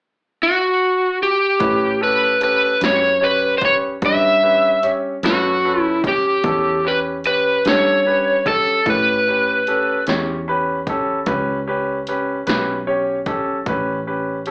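Heard as if through a live club's PA with an AM-radio tone, this laid-back, rollicking slow blues in A mixolydian moves at 50 BPM in 12/8 as an up-front overdriven slide guitar, played with fingerpicks, sings the melody from 0.4 seconds before a brilliant, deep-bassed concert grand piano with slapback echo, a round, dark fingered electric bass and a punchy analog drum machine run through overdrive settle onto an A9 chord at 1.6 seconds, with the piano adding a fill at 10.1 seconds.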